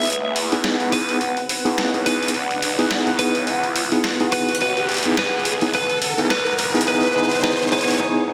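Funky and playful, this glitch hop excerpt at 106 BPM with a swung 4/4 feel in C# minor builds over a C#m9 chord as a dark, slightly broken-up lead guitar with delay carries the melody, a worn tine electric piano through a combo amp adds stabs with medium tremolo under a filter sweep, a swirling, thick phased saw bass anchors the low end, a mellow pad with 12-bit sampler grit sits in the background, a gritty, pitched-down boom bap kit of hi-hat, rim click and snare sits up front, and an electronic riser climbs from 0.1 s to 8.0 s, all bathed in a lush hall reverb and a dense, heavily limited master.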